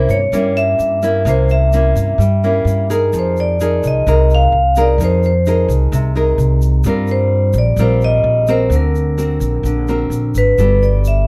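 A ringing, metallic vibraphone played with medium hard mallets, motor off and heard in a boxy small room, carries the melody over an up-front, fingerpicked classical nylon-string guitar and a woody, growly pizzicato upright bass, with a grainy, bright tube shaker sitting in the background from 0.1 s, in a breezy, relaxed bossa nova at 129 BPM whose dark, warm production with little reverb moves through C7b9, Fm7, Eb69 and Daug7 before reaching Gmaj9 at 10.6 s in this short cut from a longer piece.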